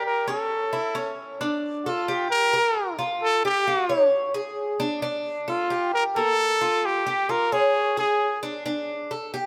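Nostalgic and warm, this short latin fragment in D harmonic minor moves at 132 BPM in a straight 4/4, tuned to A4 = 441 Hz. A breathy, whispered trumpet carries the melody up front in an intimate pop style, close-miked with vibrato and a soft attack, until 8.4 seconds. Beside it, a picked acoustic Cuban tres plays metallic double-string arpeggios with some octave-doubled strings through to 9.5 seconds, and a moderate plate reverb lends a lingering halo as the chords move from Gm and A through Dm, Fadd9 and C#5 before settling on D5.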